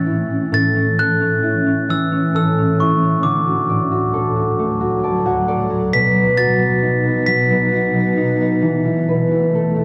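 This children's lullaby excerpt has an innocent, gentle mood and a lilting 6/8 metre with a straight feel. A glockenspiel played with soft plastic mallets carries the melody, its bell-like, metallic tone ringing up front. Beneath it, a concert harp provides thumb-plucked acoustic accompaniment, also close and ringing, and adds a fill at 4.6 seconds. A granular cloud pad holds sustained chords lower down, with a blurred, detuned, evolving texture that is softened by its own built-in reverb. The harmony moves from A to D, then B, and comes to rest on an unresolved Esus4. The sound is dry and intimate, in the manner of a close 1970s studio recording.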